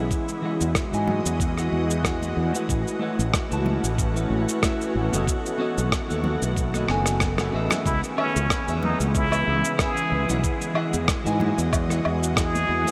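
A dreamy sunset chillout excerpt opens with a clean, picked electric guitar, a shimmering, ethereal pad and a growly, up-front fretless bass all sounding together, the pad's detuned, granular chords carrying a faint 12-bit sampler grit. Gritty, thumpy electronic kick and a sampler-style kit of cabasa, rim click and woodblock join almost at once, and very quiet, hard-hand congas with a thin, high-tuned skin slip in at 1.1 seconds. The groove sits at 93 BPM in 4/4 with a light swing on the sixteenths, moving through Emaj9, A6, B7 and C#m7 with a smooth, wistful air. After a drum fill, a brilliant trumpet with plunger mute takes the melody at 7.9 seconds, its wah-wah tone close-miked and up front with light vibrato and a diffuse ambient delay. The whole mix is soaked in a huge, long-tailed reverb that gives it a floating, hazy glow.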